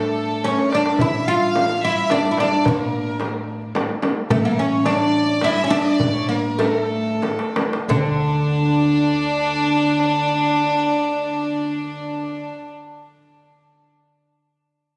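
A woody, plectrum-plucked fretless oud leads this passionate, stately Arabic maqam ensemble fragment in 3/4 at 87-109 BPM, with a pure, clear solo violin and a soft-edged, sul tasto symphonic violin section floating above it, a thumpy pizzicato upright bass beneath, and a clay-shell darbuka and a deep, distant frame drum that slow with the music from 4.3 s and stop at 8.2 s, the whole captured on a phone in a room with moderate plate reverb.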